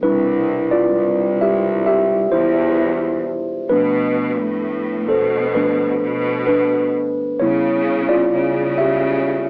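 A heartfelt pop ballad moves at a slow 65 BPM in 4/4 with a straight feel, set in C major, in this short passage cut from a longer piece. A tine electric piano carries the accompaniment and is featured as the solo voice for the full 9.5 seconds. It has a worn, slightly out-of-tune character with a cassette-tape coloring, yet it sits clean, direct and up front. Beneath it, a symphonic cello section holds the bass line, bowed with vibrato and sounding lush, focused and close. The harmony moves from Cmaj7 to Bm7b5/A at 3.7 seconds, then to C#m7b5 at 7.4 seconds. Light reverb and a home-cassette, AM-radio sound frame the whole with an emotional quality.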